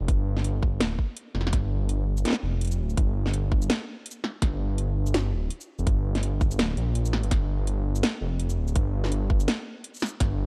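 A deep, rumbling detuned saw bass with a beating, sustained tone sits up front in this heavy yet spacious half-time drum and bass fragment in G minor at 166 BPM with a light 16th-note swing, joined from 0.1 seconds by a tight electronic kick and a layered, tape-warm kit of cracking snare, metallic hi-hats and shaker, all caught in a dry, gritty cassette recording with little reverb.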